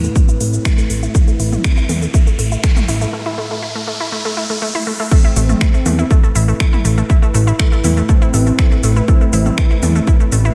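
Melodic techno with a melancholic yet driving mood, this cut from a longer piece opens with a build-up in which a filter sweep works over a round, nasal analog pluck arpeggio carrying chorus and a diffuse ambient delay. A fat, saturated analog bass sits up front beneath a deep, moody analog pad of sustained chords colored by chorus and phaser, and the pluck, bass, pad and mellow synth brass melody each pump against the sidechain. A very quiet, evolving analog drone with pulse-width modulation hums underneath, while the overdriven techno drum kit adds smooth hats, shaker, finger snaps, toms and crash. An electronic riser and swell runs from 1.1 s through a brief break, and at 5.1 s the drop arrives, with the heavy, overdriven electronic kick driving the track throughout. The brassy melody stays in the background with tape echo, and a light reverb lends the mix a touch of space.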